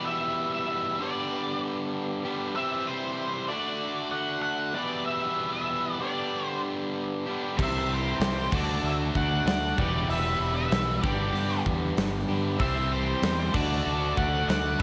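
An octave-fuzz lead guitar carries the melody in this swaggering, driving classic rock excerpt, its dark, distorted tone given a slapback echo. Beneath it, a bright, up-front overdriven guitar plays a riff, and a mellow tonewheel organ holds round sustained chords in the background through a slow rotary speaker with chorus vibrato. At 7.6 s the band fills out: a second fuzz guitar line and a compressed riff guitar sit behind, a growling fingered bass pushes forward with punchy overdrive, and a big rock drum kit enters in a big room with crash, hi-hat, kick and snare, all under light reverb as the straight 4/4 groove cycles through Em, G, C and D.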